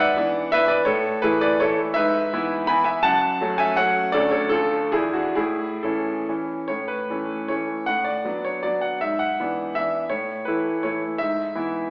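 A bright, brilliant concert grand piano plays alone from the opening, a graceful and proud romantic dance in 3/4 and A major with dotted rhythms, moving with free rubato between 124 and 180 BPM. Its deep bass, long sustain and audible action noise sit up front, while the harmony passes from A through F-sharp minor and D major seventh to a brief darkening on D minor before settling back home, and a new phrase begins at 6.7 seconds. The whole recital hall is wet with reverb and heard from further back in the room through a thin AM radio sound, and the excerpt, cut from a longer piece, breaks off at 11.9 seconds.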